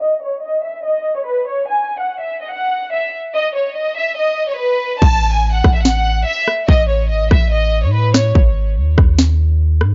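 A filtered violin section opens this menacing, ominous drill excerpt in G# phrygian at 144 BPM with a half-time feel, its light vibrato and sul tasto bowing sounding close and intimate before a deep, dark, sine-like 808 bass and an electronic drum kit with a hard-clipped kick, sharp snare, rim clicks and crash cymbal arrive at 5.0 seconds, all in a dry, gritty mix with a dulled top end.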